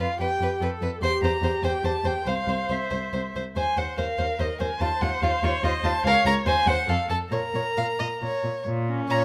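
Spirited and cheerful, this quick classical-period movement for string quartet in 3/4 moves at 131-147 BPM with a rubato feel, settling into Bb minor from 3.6 s, as a smooth, even first violin carries the melody up front with vibrato over a focused second violin line, a distant, expressive viola accompaniment touched with portamento and a rich bowed cello bass, all captured by close, detailed microphones with light reverb in a short cut from a longer piece.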